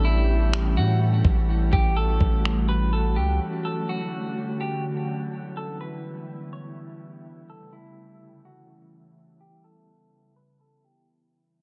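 The beat moves at 125 BPM in 4/4 with a half-time feel, and a smooth R&B drum kit of finger snaps and a knocking electronic kick, re-recorded in a large room and placed up front, plays only from 0.5 to 2.6 seconds. This melancholic, hazy stretch of atmospheric cloud-rap is cut from a longer hip hop piece and opens on a break, as a deep, sine-toned 808-style bass with a fast attack rings out and decays until 3.4 seconds. A glassy FM pad holds ethereal sustained chords throughout, its slow attack and long release softened by ensemble chorus and built-in reverb and pulsing with sidechain pumping. Above it, a clean, picked electric guitar carries the melody through spring reverb, a low-pass filter and delay. The chords move from A7 to Dmaj7 and Em7, then back to A7, while a heavily compressed, radio-like digital ambience hangs in the air, and a filter sweep and fade-out run across the whole passage.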